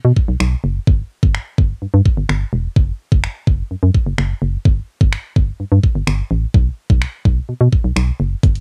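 Dry home-cassette sound frames this energetic yet bittersweet dance-pop excerpt at 127 BPM in straight 4/4, where a hollow, dark, organ-like FM bass with a fast, percussive, decaying attack pumps under sidechain between E1 and B2, and a layered electronic pop kit of knocking kick, hi-hat and finger snaps, tinged with cassette tape coloring, enters up front at 0.2 s.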